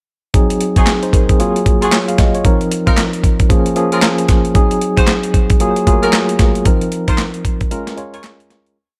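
A gritty, overdriven sampler-style kit with a thumpy kick, a snare layered with handclaps, and hard-swung hi-hat opens this slick, punchy new jack swing breakdown in Bb minor at 114 BPM alongside a clean tine electric piano pushing drop-2 chords through fast tremolo with grace notes and short fills, while a mellow, tight horn section with light vibrato adds short syncopated jazz stabs through tape echo from 0.8 s over a dry, up-front mix that cycles Ab7, Gbmaj9, F7sus4 and Bbm7 before fading out from 6.7 s into a break at 7.7 s.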